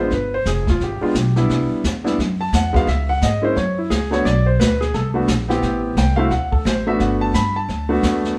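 Recorded live in one room with moderate studio reverb, this short jazz piano trio cut sounds natural, with the piano and drums placed up front. The mood is playful and swinging, with a lilting swing feel in 4/4. The grand piano carries the melody as a solo through the whole 8.4 seconds, its tone warm and intimate with long sustain and the soft clatter of its action audible. Beneath it, the upright bass is plucked on steel strings and sounds woody. The brush kit, built from brushed snare, hi-hat, boomy kick and a medium-tuned snare, has a roomy, distant character and a rolled-off top. The harmony moves from G7b9 through Cmaj9, Bm and Am9 before settling on Gmaj7 near the end.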